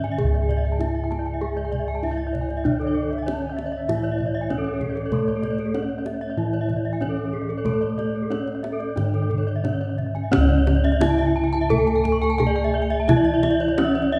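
A resonant hall's long reverb carries this brilliant, shimmering Balinese gamelan excerpt in C# pelog at 87-97 BPM, where a ringing bronze metallophone melody with paired-tuning beats rides over a darker, smooth metallophone accompaniment in the background, two bright horn-mallet metallophones spinning arpeggios above, round, dry bossed gongs up front on the bass, tight hard-handed kendang, and an airy bamboo xiao with vibrato drifting in behind from 2.3 to 6.2 seconds.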